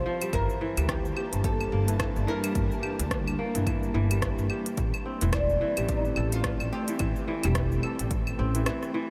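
Organic downtempo in G dorian at 108 BPM with a swung 16th feel, this meditative, earthy excerpt from a longer piece sets a bright, plectrum-plucked oud melody over ringing, fingerpicked kora arpeggios, both trailed by tape echo, while an ethereal, detuned pad holds sustained chords with ensemble chorus and sidechain pumping. A woody pizzicato upright bass, also pumping, anchors the harmony as it moves from Gm69 to Am7 at 4.8 seconds, and a punchy, overdriven electronic kick joins an overdriven kit of crisp hi-hat, claves, rim click and shaker. The dreamy mix is soaked in a huge ambient reverb with a long 7.7-second tail.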